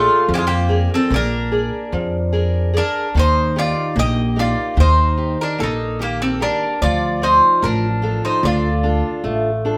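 Greek folk in a dark, wistful 9/8 at 148 BPM, this brief excerpt features a metallic, up-front Greek bouzouki carrying the melody over a woody mandolin second line, picked steel-string acoustic guitar accompaniment with audible finger squeak, and a growly, pizzicato upright bass, all heard as a band playing live in one room with moderate studio reverb as the chords move from Bb7 to Eb at 3.1 seconds and Dm at 6.8 seconds.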